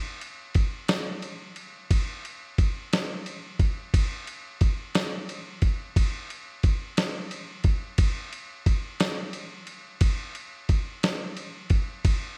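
Uplifting and jubilant, this short gospel excerpt moves at 59 BPM in a straight 6/8, counted in dotted quarters. It features a lone dusty soul drum kit with a sampler-style character, playing from 0.2 to 12.2 seconds. The kit is built from a thumpy kick, a medium-tuned snare and a ride cymbal, all compressed and gritty, with a tape-like glow. Re-recorded in a large room yet placed up front in the mix, the drums carry a sense of space while staying close. A light reverb rounds out the sound, giving the groove a slightly open, roomy finish.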